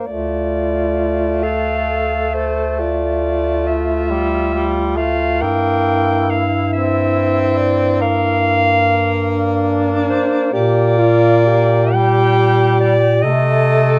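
A rubato 12/8 pulse of 41-48 BPM in dotted quarters carries this melancholic, elegiac classical fragment for single-reed quartet, tuned to A4 = 436 Hz, in D minor turning to G minor at 10.5 s. A bright clarinet sings the melody over a roomy, distant alto saxophone second line with vibrato, a clear tenor saxophone accompaniment with light vibrato and soft attack, and an up-front, warm bass clarinet with a smooth top, set in light reverb.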